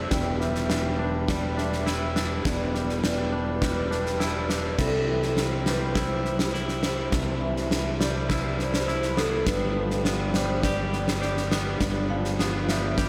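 A steady, straight 4/4 pulse at 103 BPM drives this soaring, cinematic post-rock passage in C major, cut from a longer piece, with a huge arena drum kit up front from 0.1 s laying down a punchy kick, a medium-tuned snare and bright crash cymbals in a pumping hall sound. Beneath it, a growling fingered electric bass, bright and overdriven with a direct, amped edge, holds the low register from E1 to C2. A clean, twangy electric guitar plays arpeggios colored by analog delay and slapback echo, joined in the background by a metallic, ringing vibraphone struck with medium mallets, its fast motor vibrato shimmering through the same delay and slapback treatment. A reedy, breathing hand-pumped harmonium sustains chords quietly behind them, with a boxy small-room character. The harmony moves from Em7 to Cmaj7 at 4.8 s and on to G7 at 9.5 s, and a wet scoring-stage reverb gives the whole mix a big arena scale.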